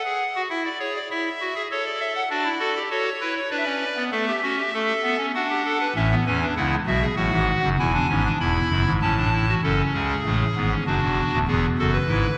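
Elegant and stately, this short cut from a longer baroque-style four-part fugue in D major moves at 99 BPM in a straight 3/4, played by a solo pipe organ on an up-front clarinet reed stop whose hollow, chiffy voice with tremulant spans D1 to B5 and rings in a wet church reverb, with harmonies passing through chords such as F#sus2, E, A and D before shifting to F#m at 9.6 seconds and then to Dadd9.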